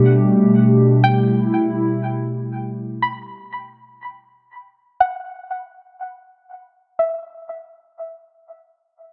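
Melancholic and ethereal, this hip hop excerpt drifts in free time. A hollow, flute-like pad holds dark, chorused Gmaj9 chords until 3.0 s, while a twangy, warbling, string-like resonator pluck carries the melody up front through 8.4 s, treated with chorus, phaser, low-pass filtering and dub echo. A filter sweep runs through the opening 7.0 s before the harmony drops out, and the echo-heavy mix sits in a moderate spring reverb.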